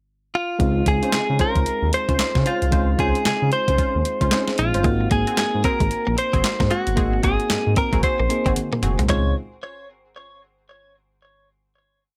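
New jack swing R&B in Db major with an upbeat, flirty mood, moving at 113 BPM in 4/4 with a hard swing on the sixteenths. A clean, direct-recorded electric guitar carries the motif-based melody up front from 0.4 seconds, its picked, compressed tone touched with digital delay. A crisp 8-bit drum machine drives a thumpy, overdriven beat with the snare layered with a clap, while a smooth, sawtooth-and-square synth bass glides through a bouncy line full of muted ghost notes and chromatic approach notes. Round, warbling electric-piano-like keys hold rootless chords under chorus, and a nasal, detuned polysynth adds short syncopated stabs with a filter pluck. A second clean guitar slips in at 4.8 seconds with a muted single-note line in the background as the harmony moves from Dbmaj7 to Ab7, and after a drum fill the piece settles on a final Dbmaj7 chord in a dry, close sound.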